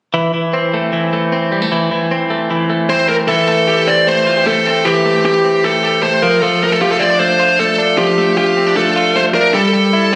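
Indie pop at 153 BPM in a breezy, youthful mood, this excerpt opens with a bright, twangy twelve-string electric guitar picking clean arpeggios through spring reverb before a dark, high-gain lead guitar enters at 2.9 seconds with a distorted melody, both up front over chords moving from Am/E to Am7, Dm and a rootless C, all heard with a phone-in-the-room immediacy and a moderate plate reverb.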